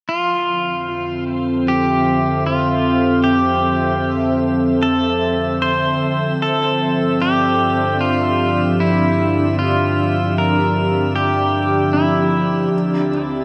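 Over a straight, unhurried 4/4 pulse, this melancholic, reflective ambient passage sets a bright, twangy pedal steel guitar up front, carrying the melody with slide and volume swells, beside a glassy FM pad holding sustained chords through ensemble chorus. Beneath them a round sine sub bass fades in from 0.1 seconds, an organ-like drone with ring modulation and a moving notch sits in the background, and a drifting harmonics texture shimmers high above, also fading in. A very quiet felt-muted upright piano with audible action noise plays soft arpeggios until 6.4 seconds and returns at 11.9 seconds, all bathed in a huge, wet reverb.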